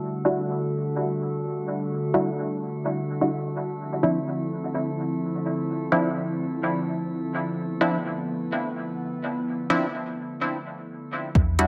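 The recording sits in a cavernous, echo-heavy space, with a moderate plate reverb and a low-pass filter dulling its top end. This hypnotic dub techno excerpt drifts in free time, tuned to A4 = 437 Hz, and moves from a rootless Em9 to Dm9 at 3.8 seconds. An airy, breathy pad holds sustained chords up front, its slow attack and long release softened by chorus and a filter sweep. A muted, deep sawtooth chord stab with a filter pluck plays through phaser, chorus and a trailing dub echo, also under a filter sweep. Beneath them, a faint glassy texture of drifting overtones adds its own built-in reverb, and the stab, pad and texture all pump against a sidechain. Only at 11.4 seconds do a round, tube-saturated sub bass and a punchy, forward kick arrive, followed by a brief touch of smooth hi-hat as the excerpt cuts off.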